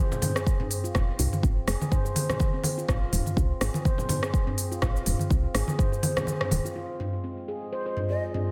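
A ringing steel handpan opens this earthy, spiritual afro house fragment with meditative arpeggios, filtered and pumping, trailed by tape echo, as a smooth-hatted deep house kit of cabasa, rim click and toms joins hard-handed, bright, saturated congas. A deep, up-front electronic kick and a round, woody FM bass with tube saturation carry the groove over swung sixteenths until the kick stops at 5.9 seconds. Late in the passage a detuned, moody analog pad with chorus enters at 7.3 seconds, and a breathy, reedy bansuri touches a single note under light digital reverb.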